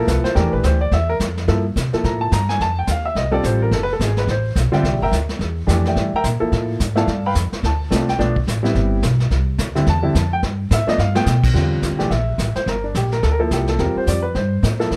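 Playful and warm, this fragment of a jazz piano trio swings briskly at 215 BPM in C mixolydian, with an intimate, up-front upright piano soloing until 11.5 seconds over chords like C9, F9 and G9, its action noise audible, while a woody, thumpy pizzicato upright bass sits close beside it and a distant, roomy brush kit with dark cymbals and a punchy kick plays a fill at 11.0 seconds, all under light reverb.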